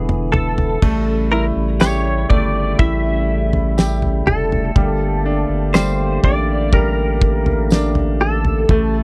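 A fat-snared drum fill from a damped 1970s kit opens this longing, melancholic pop ballad excerpt, while a twangy, chorused clean electric guitar carries the melody over brilliant grand piano, a warm tonewheel organ turning through a slow rotary speaker, a deep saturated sub bass and a distant, jingly tambourine that joins at 1.8 seconds, in a dry, close 1970s-style studio sound.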